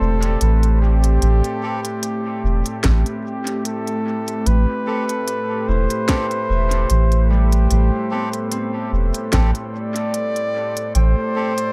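An echo-heavy, lightly reverberant mix sets a meditative, deep ambient dub mood at 74 BPM in A minor, resting on a single Am7 chord with a light sixteenth-note swing. A veiled, bucket-muted trumpet carries a classical-style melody with light vibrato through dub echo, over a warbling, nostalgic tape-like pad with chorus and a round, up-front sub bass. A bright, ringing concert harp plays arpeggios in the background, a reedy, breathy melodica adds echoed stabs from 1.6 seconds, and a large-room drum kit with a woody snare and crisp hats is joined by a tight electronic kick between 2.8 and 9.5 seconds.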